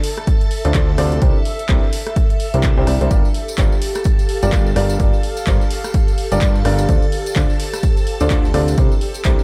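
A warm concert grand piano carries the riff from 0.6 seconds, deep-bottomed and present with short sustain, touched by dub echo and sidechain pumping, over Dm7, C9 and Gm7 chords in G dorian at 127 BPM with a 16th-note swing. Beneath it, a punchy up-front kick and a tape-toned analog drum machine of handclaps, hi-hat and rim click drive the groove, while a fat, detuned sawtooth bass pumps alongside. Shimmering vintage string-machine violins and a warbling, nostalgic lo-fi pad with chorus, phaser and reverb sit behind, and a background tambourine joins at 3.1 seconds, giving this soulful, bittersweet piano house excerpt a dark, warm finish.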